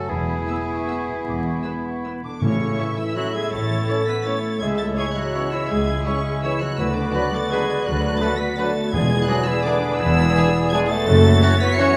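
A rubato three-beat lilt carries this sweeping, festive orchestral ballroom waltz, cut from a longer piece. A rich, vibrato-laden high violin section sings the melody over lush violas and a mellow solo bassoon, while a portamento-tinged cello section and a clear double bass section anchor the bass. Second lines come from a very quiet violin group, a vintage-toned clarinet, an airy flute group and a close-miked oboe, as a mellow horn section holds sustained chords, a concert harp rings out arpeggios and calf-headed timpani sound at 2.4 and 8.9 seconds. From 2.8 seconds a bright, tight trombone section adds quiet chords and a trumpet punctuates with stabs, inside a reverberant recital hall with vinyl crackle underneath.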